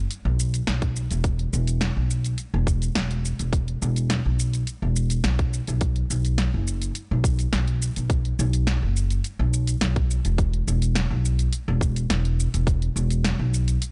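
A woody, thumpy upright bass opens this earthy, hypnotic organic downtempo fragment, its dark gut-string pizzicato sitting up front in a low register. A deep house drum kit of hi-hat, shaker and a punchy, overdriven snare joins almost at once, and a tight electronic kick arrives at 0.8 seconds, placed up front with the air of a large room behind it. The sound is dry and gritty, with transformer saturation and a muted top end that keeps the groove close and grounded.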